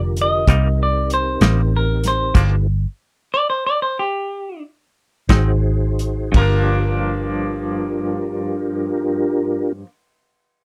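A slow 12/8 blues rhythm that gradually slows and breaks into a stop from 2.4 to 5.3 seconds carries this brooding, mournful fragment, with a round, foam-muted fingered bass and a soul drum kit with dark cymbals up front until the drums finish at 6.5 seconds, a hollow-body guitar picking a clean melody, a compressed, twangy guitar with tremolo accompanying beneath, and a soft, flute-like tonewheel organ holding sustained chords through a slow rotary speaker, all in a dry, close 1970s-style studio sound.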